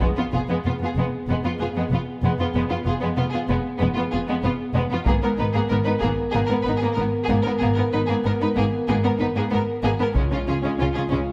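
Dark and relentless, this epic orchestral film cue moves at 94 BPM in 4/4, with a rich, focused and distant violin section carrying the melody over a smooth second violin line, violas set in the background, and a tight, dark French horn section holding sustained chords. Woody cellos with a soft attack and bowed double basses anchor the bass, while a taiko ensemble struck with hard sticks enters at 0.0, 5.1 and 10.2 seconds as the harmony moves from Fdim through Abmadd9 to Db. A moderate scoring stage reverb surrounds the lush, vibrato-laden strings in this short cut from a longer piece.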